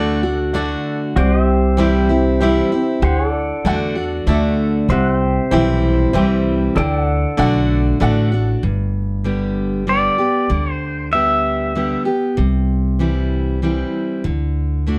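Easygoing and sunny, this honky-tonk and classic country passage, cut from a longer piece, sways in a straight 3/4 lilt. A brilliant upright piano with audible action noise and an intimate, woody touch plays accompaniment alongside a full-bodied, jumbo steel-string acoustic guitar that is picked and sits up front. Underneath, a thumpy pizzicato upright bass with steel strings holds down the bottom for the whole passage. A clean pedal steel guitar plays sustained chords with volume swells and slide. The piano drops away at 8.4 s, and the pedal steel follows at 8.6 s, when the harmony moves from alternating D and C chords to G and the pedal steel solo begins. A second pedal steel line, bright and twangy, played with fingerpicks and placed up front, sings from 9.9 s to 12.0 s. The production is dark, with light reverb.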